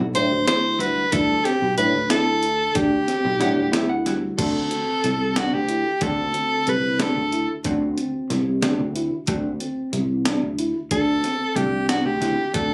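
Hollow-body jazz guitar and fretless electric bass open this bright, driving progressive instrumental excerpt at 184 BPM in 5/8, set in D mixolydian with a straight feel. The guitar plays dark, clean, picked accompaniment, while the growly, punchy bass sustains low notes through an ensemble chorus. A tine electric piano adds warm arpeggios through a combo amp. A sampler-style drum kit, gritty and tape-tinged with a thumpy kick and medium-tuned snare, drives the music with hi-hat and crash cymbal. Up front, a soprano saxophone carries the jazz-style melody with vibrato and subtone, resting from 7.5 to 10.9 seconds before returning. The guitar plays a fill leading from Emadd9 into D7 at 4.4 seconds, and the whole band sits in club reverb with compression, heard as if captured on a phone in the room.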